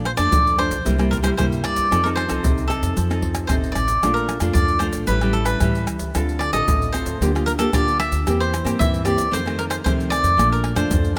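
A rough home demo mix bathed in a lush hall reverb carries this joyful, sunny samba and choro passage in Bb major at 114 BPM, cut from a longer piece. Up front, a crisp picked cavaquinho sings the melody over a fingerpicked nylon-string guitar with a classical touch, while a woody pizzicato upright bass anchors the harmony as the chords move from Bbmaj7 through A7 and Dm7 before settling back on Bbmaj7. Close, dry percussion from pandeiro, tamborim, tube shaker and a deep surdo, played with hard hands, drives the sunny groove throughout.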